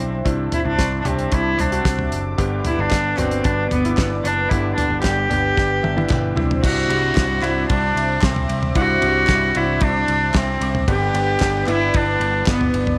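A nasal, reedy cello carries the melody with a slapback echo, bowed by a single player over a clear concert grand piano whose action noise is audible, in this anthemic, warm piano-driven pop excerpt at 113 BPM, cut from a longer piece and moving between Cadd9 and G. A punchy picked electric bass and a dry 70s drum kit with a fat snare and tight kick support the piano, and a detuned analog pad with chorus sits in the background. Hollow group handclaps enter very quietly at 2.9 seconds, and the drums and piano play a fill together from 5.6 to 6.6 seconds before the second section, all in a light studio reverb.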